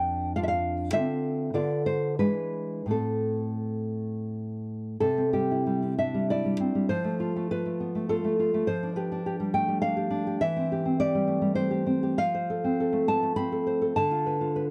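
A nylon-string guitar plays solo and up front in this intimate, melancholic romantic piece for classical guitar, its warm, thumb-plucked tone captured dry and close in a 1970s-style studio recording as it moves in a rubato 3/4 at 82-108 BPM from A minor into C major at 5.0 s, in a short cut from a longer work.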